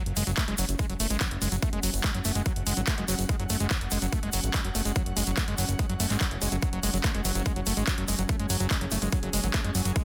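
A straight 4/4 pulse at 144 BPM drives this hypnotic, driving psychedelic trance passage in F# minor, cut from a longer piece. A big-room dance kit of handclaps and hi-hat and a fat, detuned sawtooth analog bass sitting up front arrive at 0.1 seconds, a grainy egg shaker follows in the background, and a punchy, overdriven electronic kick joins at 0.4 seconds. Over them a screaming, squelchy acid riff with resonant filter sweeps, distortion, chorus, delay and sidechain pumping cuts through, while a soft, breathy pad with a noise layer and slow attack breathes beneath in a dense, heavily limited mix with light reverb.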